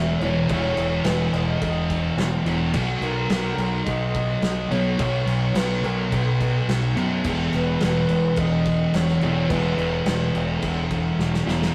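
Dreamy and blissful, this short cut from a longer shoegaze and dream pop rock piece moves at 107 BPM in a straight 4/4, shifting from E5 to a Bmaj7 with the third omitted and back to E5. A double-tracked, up-front fuzz guitar plays the riff, backed by a bright, growling fingered bass with overdrive and a loose acoustic indie kit with a punchy kick and medium-tuned snare; the drums enter at 0.2 seconds and close with a fill at 11.2 seconds. Above them floats a mellow, round, horn-like sawtooth synth lead with a soft attack, vibrato, chorus and digital delay, heard in a wet stone room reverb with the rough, warmly saturated character of a rehearsal-room recording.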